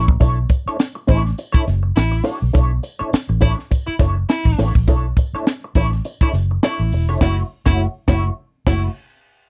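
A sly, funky groove, cut from a longer piece, opens at once with baritone saxophone, wah-treated electric guitar and muted electric bass sounding together from the start. The drum kit enters a fraction later, its high-tuned snare, tight kick, hi-hat and dark cymbals crisp and up front in an airy studio room, while a jingly tambourine sits in the background until 7.1 seconds. The bass is round, dark and foam-muted, and the guitar, twangy and compressed at the edge of break-up, accompanies over a rootless Bm11 harmony with a swung sixteenth-note feel. The baritone saxophone carries a second line with a clear, punchy tone and vibrato, heard at a distance with a roomy quality. At 7.2 seconds the band hits an accent as the harmony moves to F#m7, all within a dry, close 1970s-style recording with little reverb.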